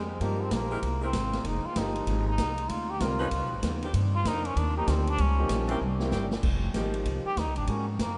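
A buzzy, metal-muted trombone carries a sultry, brassy solo through this brief cut from a big band swing number in C minor at 193 BPM, over woody, thumpy pizzicato upright bass up front, a roomy, distant drum kit with a fill at 5.8 seconds, clear grand piano chords with long sustain, a picked steel-string acoustic guitar in the background until 6.3 seconds, and a tight, warm saxophone section holding chords briefly at 0.7 seconds and again from 3.2 seconds, set in a vast, echoing cathedral-like space.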